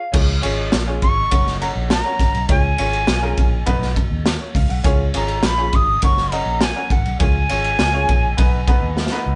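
An uptempo 1960s-style soul excerpt with a joyful, warm mood, where an airy jazz flute with vibrato and a crisp chiff carries the melody over a bright, brilliant baby grand piano and a dark, round, foam-muted electric bass. A raw garage drum kit sits up front, gritty and saturated with a punchy kick and a pumping small-room sound across crash, ride, hi-hat and snare, and it closes with a fill from 9.0 to 9.4 seconds. The band plays live in one room with light reverb and a rolled-off top end.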